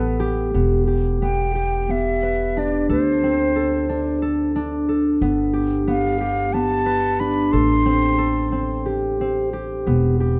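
Restless and pensive, this contemporary chamber piece in an uneven 7/8 metre, cut from a longer work, sets a breathy, straight-toned flute melody with a soft attack over bright, ringing thumb-plucked harp arpeggios and a woody, thumpy pizzicato upright bass on gut strings. All three instruments sit up front in a close, detailed recording with light reverb, while the chords move through Em7, D5, G7 and Am7. The flute falls silent at 8.9 seconds, leaving harp and bass to carry on until 10.4 seconds.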